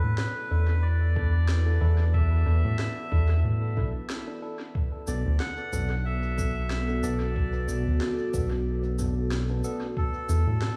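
Ambient dub at 92 BPM in B minor, this meditative, deep excerpt rests on a single Bm7 chord, with a round, sustained analog bass up front and a dark, warbling pad of detuned, chorused sustained chords behind it. A reedy, breathy melodica carries the melody through dub echo, while a bright, clean tine electric piano adds echoing stabs. A woody, tape-toned electronic kit of cabasa, snare and toms sits low in the mix with dub echo, and a muffled, thumpy kick enters in the background at 1.2 s, all within a light small-room ambience.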